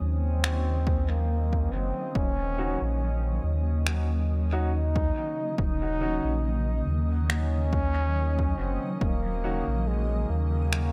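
A mellow solo trombone with light vibrato and a soft attack carries the melody through a dub echo, over a round, up-front sub bass and a cloudy, evolving granular pad in this meditative, deep ambient dub fragment at 70 BPM in Eb dorian, resting on an Ebm7 chord. Overdriven electronic finger snaps with dub echo join almost at once, a punchy, layered kick arrives at 0.9 seconds, and a bright, woody upright piano adds filtered, echoing stabs in the background from 2.6 to 9.6 seconds. The parts sit in light reverb and small-room ambience, with a gentle swing on the 16ths.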